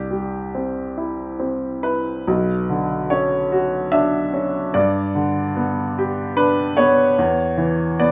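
Intimate and melancholic, this short fragment of neoclassical minimalist piano unfolds in a loose, rubato triple metre, carried by a solo upright piano that sounds bright, woody and up front, its notes ringing with long sustain. The harmony moves from C to Bmadd9 as a new passage begins at 2.3 s, then drifts through G toward E7(no3). A wet studio reverb surrounds the instrument in a rough, home-demo mix.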